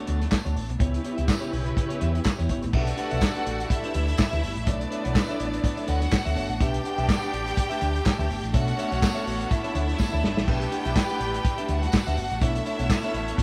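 A clean, picked electric guitar with spring reverb and a rich, lush studio string section sound from the very start of this driving, glamorous disco cut, which moves at 124 BPM in 4/4 with a light swing on the sixteenths. A dry, muffled soul drum kit joins almost at once, its tight kick, medium-tuned snare, handclaps, hi-hat and dark crash cymbals sitting up front with a rolled-off, lo-fi top. Alongside it, a round, punchy hollow-body short-scale bass, played with the fingers, holds the low end, while a jingly tambourine stays in the background. At 2.7 seconds a clear, focused symphonic string section adds a bowed second line with vibrato, and a mellow, distant horn section enters with octave-doubled stabs. The harmony moves from Bm9 to C#m7b5 at first, then alternates A9sus4 and Bm11, with a drum fill at 10.0 seconds, and the whole band sounds as if playing live together in one room with moderate reverb.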